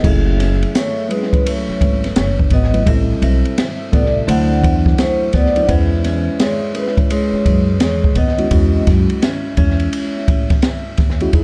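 An echo-heavy mix with small-room ambience frames this smooth, cool stretch of jazz-hop in a swung 4/4 groove. A soft-mallet vibraphone carries the airy, ringing melody with a slow motor vibrato and tape echo, while a clean, fingered electric guitar plays a lower second line beneath it, both stopping at 10.6 s. A mellow tine electric piano, direct in tone with phaser and tape echo, moves through F#m9, Am7, D9 and E6 over a thumpy, woody pizzicato upright bass and an up-front acoustic jazz kit with a boomy kick, high-tuned snare, dark cymbals, a rolled-off top and tape echo.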